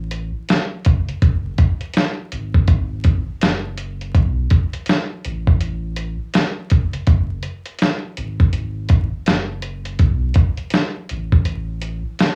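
Crackling vinyl, a home cassette recording and a small-room ambience with light reverb frame this nostalgic, hazy lo-fi hip hop fragment, where a gritty, compressed, tape-worn soul drum kit of thumpy kick, medium-tuned snare and hi-hat swings its 16ths up front from 0.1 seconds while a deep, mellow sub bass with an octave layer and a touch of transformer saturation sustains full, rounded notes beneath it until 12.0 seconds.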